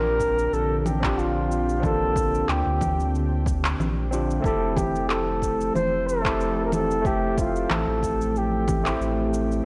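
A lightly swung 92 BPM groove of punchy, overdriven electronic kick with layered shaker, congas and handclaps carries this smooth, warm sunset chillout passage in F major, where a deep, round sub bass and a bright, barky tine electric piano with vintage 12-bit sampler grit and digital delay sit above an ethereal, chorused pad in the background, while a dark, breathy flugelhorn with light vibrato and scooped notes takes the intimate solo up front, the mix set in a lush hall reverb and warbling cassette-tape pitch drift.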